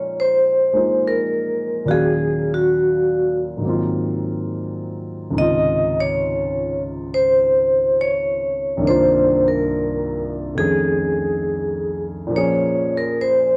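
A slow swung 4/4 at 69 BPM carries this smoky, melancholic jazz fragment in B-flat minor, where a bright, ringing vibraphone with medium hard mallets and fast motor vibrato sings the melody up front over a natural-sounding grand piano that supplies the chords, moving from Bbm11 through Ebm9, Ab13 and Dbmaj9 to Cm11 and F7alt before settling on Bbm9, all inside a moderate large-studio reverb and the worn, warbling pitch drift of old cassette tape.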